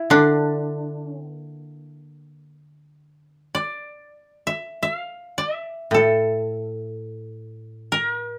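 Meditative and still, this short excerpt of Japanese chamber music unfolds in free time in D hirajoshi, tuned to A4 = 443 Hz. Two kotos played with fingerpicks sit up front and dry: one carries the melody between D4 and F5 with a woody, warm tone, while the other, brighter in character, supports it from A2 to D3, entering at 0.1 seconds. Close, detailed microphones catch every pluck, set in a moderate studio reverb.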